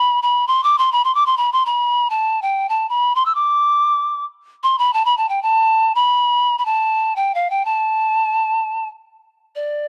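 A polished pan flute plays alone for the full 9.9 seconds, its airy, wooden tone carrying a crisp attack, a touch of chiff and vibrato as it moves between D5 and E6, placed up front. This soulful, melancholic passage of Turkish makam ensemble music unfolds in free time in makam uşşak on A, cut from a longer piece. The sound is dry and close in the manner of a 1970s studio, with a small room ambience.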